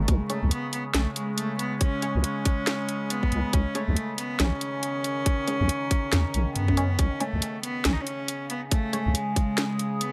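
Deep dubstep at 139 BPM with a half-time, swung feel, dark and cavernous, where a rich, reedy bowed cello carries the melody up front with dub echo over a resonant drone of moving overtones, a deep wobbling sine-and-triangle bass that stops at 9.1 seconds, a tight overdriven electronic kick, a garage kit's hi-hat and cracking snare, and muted, detuned dub chord stabs with phaser sitting in the background.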